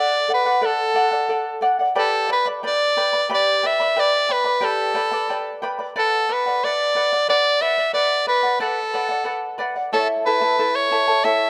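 In a straight 3/4 at 90 BPM, this wistful, earthy Andean folk fragment in B minor moves through D, G, B minor and A across its 11.5 seconds. An edgy soprano saxophone carries the melody up front in a classical style, with light vibrato and a present tone. Alongside it, a mellow acoustic charango is fingerpicked on shimmering double strings, some octave-doubled, all captured by close, detailed microphones in light reverb.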